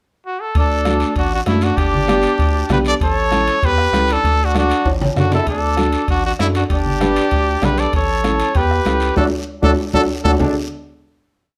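Cumbia with a festive, joyful spirit, opening on a brief trumpet pickup at 0.3 seconds before the full band arrives and carrying through to a held final chord. The clear, punchy trumpet leads up front with hook-like motifs and light vibrato, while a reedy accordion adds a harmony line mostly in thirds, a round analog bass plays a cumbia figure, and a dark, woody upright piano with a slightly detuned, vintage character supplies rhythmic triad chords. Beneath them, the soft-beatered bombo, bright congas in the background, a raspy guiro and ringing metal-shell timbales drive the groove, with drum fills around 4.5 and 9.6 seconds and a closing band accent, set in a moderately reverberant large studio.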